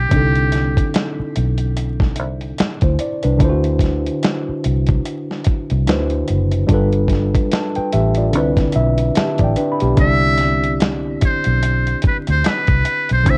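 R&B and neo-soul groove, relaxed and smooth, built on a slightly out-of-tune tine electric piano that plays throughout and adds a fill from 8.3 to 10.0 seconds, a dark, round, foam-muted fingered bass with transformer saturation, and a gritty, compressed sampler-style drum kit with thumpy kick, hi-hat and medium-tuned snare, while a buzzy, brilliant trumpet with metal mute, light vibrato and scooped notes sounds briefly at the start and returns at 10.0 seconds, all coloured by worn, warbling cassette tape, pitch drift and vinyl crackle in a dry mix.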